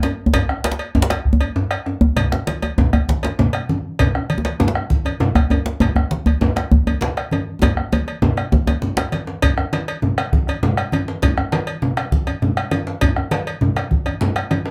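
A rolling 12/8 pulse drives this festive West African drum ensemble passage, with a metallic cowbell ringing over a round, up-front bombo and two djembes: one vintage and band-limited with hard hands, the other deep and dry. Low-tuned, damped congas with a thick-skin tone join at 2.2 seconds. A drum fill arrives at 7.6 seconds before the dry djembe drops out at 9.1 seconds, leaving the rest to push on into a new section in a small, reverberant room heard from further back.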